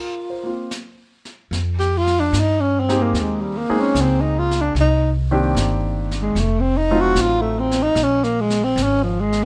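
Smoky and melancholic, this short jazz ballad in F minor moves at a slow 75 BPM in 4/4 with a swung eighth-note feel, and it is cut from a longer piece. A dark, breathy tenor saxophone carries the melody from the first moment, its subtoned, whispered phrasing marked by vibrato, scooped notes and soft attacks, and it sits intimately up front. A concert grand piano supplies accompaniment with deep bass and short, polished sustain, its harmony moving from Fm11 through Cm9 and F7b9 to Bbm7 before it drops out at 8.0 seconds. Brushed drums enter at 0.7 seconds, high-tuned snare and hi-hat sounding distant and roomy, as if from a small room. At 1.5 seconds a pizzicato upright bass joins, woody and growly with steel strings, and the saxophone takes its solo over the rest of the passage. The overall sound is dry, with little reverb.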